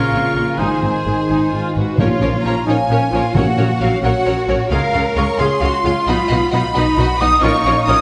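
A hollow, airy concert flute carries a second line from 1.8 s, crisp in attack and close-miked, sitting in the upper register in this determined, swashbuckling cue from a heroic adventure film score. It is set in Bb minor at 88 BPM in a straight 6/8. In the opening, a clear, lightly vibrato oboe and a dark French horn section holding sustained chords join the strings, both dropping away at 1.8 s. Through the whole passage, lush bowed strings sing: a soft-attacked, expressive violin section takes the melody high above a focused second violin line, while a smooth, distant viola section fills the accompaniment. Beneath them, a clear cello section and a rich double bass section anchor the bass, and a thumb-plucked concert harp rings out arpeggios in the background. Hard-mallet timpani with calf heads strike articulate hits on Bb from 2.0 to 4.0 s as the harmony moves through Bbm, Gb/Bb, Db and B before settling back on Bbm, all bathed in a wet scoring-stage reverb.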